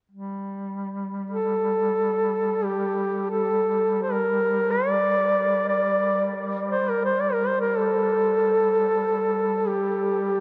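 Caucasian folk lament in free time and G minor, solemn and longing, cut from a longer piece. A mellow duduk drone on G3 begins at 0.1 s, up front with a smooth top, soft attack, vibrato and scooped notes. At 1.3 s a second duduk enters with a distant, roomy melody between G4 and D5 carrying analog delay, and the whole dreamy mix is soaked in a huge ambient reverb.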